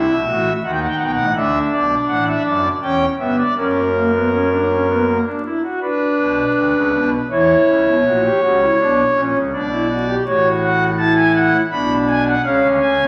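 Elegant and stately, this is a baroque-style fugue in three voices for solo pipe organ, taken from a longer piece and moving in an unhurried triple metre with a straight feel. The organ speaks on its foundation stops, with a thick, romantic voicing that sits up front and spans from a deep E1 at the bottom to B5 at the top. The harmony travels through minor chords, diminished chords and dominant-flavoured chords, and a second section begins at 5.8 seconds, settling onto a C# chord at the close of the passage. A stone-room reverb with a 1.3-second decay gives the organ a churchlike halo, while vinyl crackle lends the recording an aged, archival character. The instrument is tuned slightly below modern pitch, at A4 = 437 Hz.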